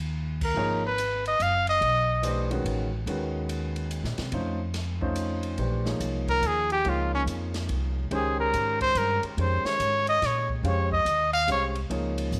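Modal jazz in 3/4 at 143 BPM, swinging with a searching, intense mood, cut from a longer piece and settling into B-flat Dorian at 5.6 seconds. A woody, thumpy pizzicato upright bass sits up front from the start. It is joined after an opening band accent by a polished, airy big-band drum kit with dark cymbals and a punchy kick, and by a clear grand piano with long sustain comping through Abm11 and F7b13. The bright trumpet, with vibrato and a slapback echo, plays a brief early phrase, then launches its solo at 6.3 seconds over Bbm11, and the whole band is set in light reverb and studio ambience.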